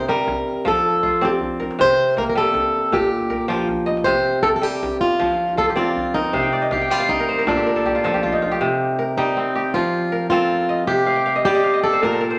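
A fingerpicked, plugged-in acoustic guitar with a boxy tone and a swing-style touch carries the melody up front in this hypnotic, reflective excerpt of West African traditional string and xylophone music, set in C dorian at 106 BPM in 12/8. Beside it, a bright kora spins ringing, crisp fingerpicked arpeggios, adding a fill from 6.3 seconds. Deep in the background, a soft-handed djembe gives a compressed, saturated pulse until it drops out at 8.6 seconds. From that point, the guitar moves into a solo while the kora continues and returns with another fill near the close. The harmony circles through Cm, F and Bb, all set in a large studio reverb that gives the recording a spacious glow.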